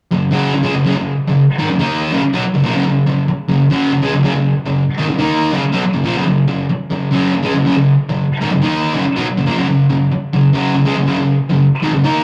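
A straight 4/4 pulse at 141 BPM drives this rowdy, swaggering rock fragment in F# major, where a lone electric fuzz guitar plays throughout, from 0.1 to 12.2 seconds, opening on an F#5 chord and ranging from F#2 to D#4. The bright, picked guitar is double-tracked, compressed and up front, its distortion trailed by analog delay. A wet small-room reverb and warm saturation give the whole take a rough rehearsal-room feel.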